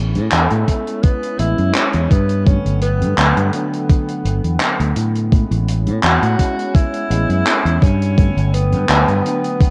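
Woozy and faded, this vaporwave fragment drifts along in a loose, gently swung 4/4, cut from a longer piece and circling between Amaj9 and Gmaj9. A breathy tenor saxophone carries the melody from 0.3 seconds, its subtone playing full of vibrato and scooped notes, sounding distant and whispered through a tape echo. Beneath it, a tine electric piano comps with a lush chorus, while a warbly, lo-fi pad hangs in the background with slow-attack, long-release chords wrapped in chorus and reverb. A thumpy, overdriven electronic kick sits up front from 0.7 seconds alongside a vintage kit of handclaps and hi-hat with a rolled-off top, and a fingered electric bass holds the low end until 9.2 seconds. The whole thing has the rough, hazy character of a home demo dubbed onto cassette, with only a light touch of room reverb.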